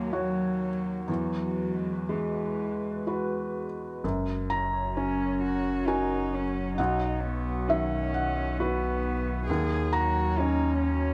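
Tender and intimate, this slow, rubato neoclassical excerpt in 3/4 at 60-68 BPM sets a felt-muted upright piano, mellow and up front, alongside an airy, sul tasto cello line and a hollow, flute-like pad with chorus, with a deep, round sub bass entering at 4.0 seconds as the chords move from D#m7 through Eadd9, F#, and B, all bathed in a moderate large-studio reverb.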